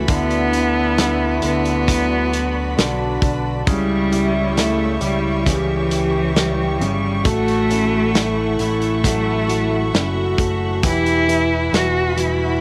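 A focused, bowed cello carries the melody up front with vibrato in this melancholic, emotional pop ballad in B minor at 67 BPM, cut from a longer piece, while a soft-attack French horn section plays a second line. A concert grand piano with audible action noise and long sustain, a lush, distant studio string section holding chords, and a very quiet parlour acoustic guitar picking arpeggios fill out the harmony through Bm/D, C#dim, A6 and Emadd9. A round, dark electric bass and a loose indie drum kit with a punchy kick from a small room anchor the groove, and the cello, horns, piano and strings carry the tape character of a home cassette recording with little reverb.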